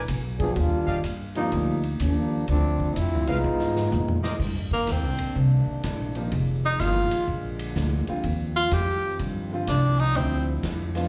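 Heard through a club's PA with a touch of reverb and studio ambience, this brassy, dramatic cut from a longer big band swing piece moves at 125 BPM in C minor with a swung feel. It opens with a trombone section solo: a clear, close-miked second line set under stabs from a warm trumpet section with slapback echo. Beneath them sit a woody, up-front pizzicato upright bass and a natural, big-room drum kit with a punchy kick and medium-tuned snare. A drum fill carries the music into a second section at 4.4 seconds, where the tenor saxophone takes the melody, present and up front, with soft attacks, scooped notes and its own slapback echo. Behind it the trombones sit in the background on sustained chords, and a vintage upright piano with audible action noise and long sustain comps from 6.2 seconds, after a brief touch near the start. The harmony moves through rich chords such as Cm9, Fm9 and Eb69 before landing on Dm11.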